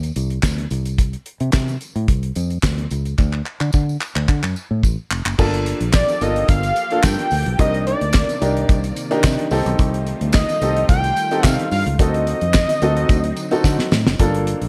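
Early-eighties boogie funk in G minor at 109 BPM, this danceable, funky excerpt opens with a damped 70s drum kit and a fingered electric bass driving a straight 4/4 groove. The kit has a fat snare, tight kick, dark cymbals, handclaps and hi-hat, all dry and up front with gated reverb, while the growly, foam-muted bass sits equally forward. A jingly tambourine rings in the background from the start. After a drum fill from 3.2 seconds, the second section arrives at 5.4 seconds with a clear, boxy grand piano. It is soon joined by a silky string machine with ensemble chorus and a fat, detuned analog sawtooth lead carrying the melody with vibrato and slapback echo. The harmony moves through Gm9, Cm9, F9 and D7b9 before another drum fill near the close.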